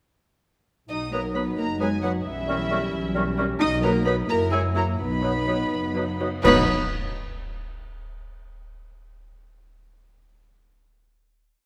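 A sul tasto chamber violin section carries the melody of this playful, whimsical film cue in 6/8, joined by a second violin line and dark cellos each doubling the tune at the octave, double basses marking the beats, mellow French horns holding chords in the rhythm of the tune, and violas, an airy flute ensemble, a bright clarinet and a distant bassoon adding after-beat chords in the background, until cymbal swells, clash cymbals and concert bass drum strokes enter at 3.6 s and the mischievous, magical cue settles onto a final chord at 6.5 s inside a wet scoring-stage reverb.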